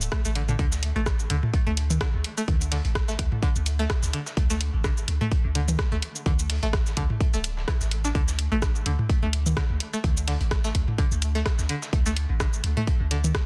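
Quirky and sparse, this short minimal techno cut runs at 127 BPM in 4/4 with a light 16th-note swing, built on a punchy, up-front electronic kick and a deep sine sub bass with a pitch-drop attack, sidechain pumping beneath both the bass and a twangy, string-like resonator pluck riff coated in chorus, phaser and dub echo. A house kit adds bright hats, cabasa and rim clicks with soft clipping on the snare, while tape-warm analog electronic toms join at 0.5 seconds and a gritty, sampler-style soul kit of hi-hat and snare sits high-passed in the background. The mix is dry, dense and heavily limited.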